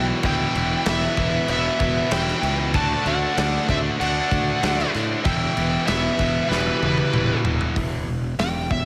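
A straight 4/4 pulse at 96 BPM drives this aggressive hard rock passage in E minor, cut from a longer piece and moving from Em to D to E5. A smooth overdriven lead guitar carries the melody with slapback echo and digital delay, while a dark, fuzzy octave-fuzz lead guitar sits in the background with a second line until 7.4 seconds. Beneath them, three picked riff guitars stack up: a biting overdriven guitar and a double-tracked raw garage guitar, both set back in the mix, plus a very quiet hollow-body semi-hollow guitar that holds on to the end. A growly, punchy fuzz bass played with the fingers anchors the low end, and a big acoustic rock kit with a tight kick, medium-tuned snare and rolled-off top enters at 0.2 seconds, hitting a drum fill before the lead guitar breaks into a solo at 7.8 seconds. A lush hall reverb gives the whole mix a big arena sound.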